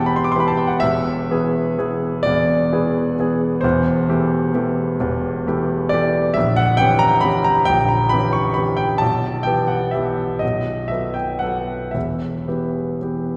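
A wet scoring-stage reverb with a 1.8-second tail surrounds this short cut from a longer romantic nocturne, set in a room heard from some distance. At its centre is a solo grand piano whose tone is clear, polished and intimate, with the mechanical noise of its action audible beneath the notes. The music moves in a slow, rubato 12/8 at roughly 37 to 46 dotted-quarter beats per minute, in E minor, and its mood is wistful and yearning. The piano spans a range from deep A#0 up to D6. The harmony turns from E minor through E7 and Am7/E to a darkened A#dim7 at 6.4 seconds, then moves through Em/B and a bare B5 before settling back on E minor at 11.9 seconds.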